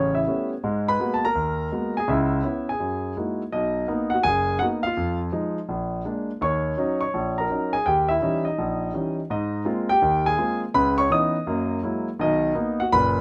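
Moody and cool, this solo jazz piece swings at 166 BPM in 4/4 in G# minor, with a lilting swung eighth-note feel. A concert grand piano carries everything alone, sitting up front with a warm tone and deep bass that reaches from the low register up into its upper range. The harmony moves through rich extended chords, opening on A9 and G#m9 before drifting through C#m7 and F#13. From 3.5 seconds a new section begins on Bmaj7 and winds through Fm7, A#7 and a tense D#7b9 before settling on G#69 and returning home to Bmaj7 by 12.2 seconds. Light reverb gives the instrument a gentle sense of space in this short cut from a longer performance.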